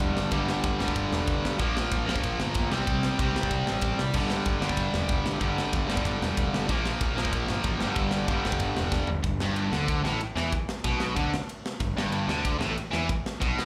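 Punk rock at 188 BPM in a straight 4/4, this rowdy, energetic passage is cut from a longer piece and sounds like a live gig heard through the venue's PA, with club reverb and small room ambience around it. A distorted electric guitar drives the riff from start to finish, bright, overdriven, double-tracked and up front, with a slapback echo on its picked power chords. Underneath, a fuzz picked electric bass growls in the low register, direct and amped with overdrive adding grit. A tight metal drum kit plays throughout on crash, ride, snare, kick and toms, sounding airy and polished, with bright cymbals, a medium-tuned snare and a tight kick. The harmony circles G5, Bb5 and C5, and a drum fill at 8.9 seconds launches a second section at 9.2 seconds that settles on G until the cut at 13.7 seconds.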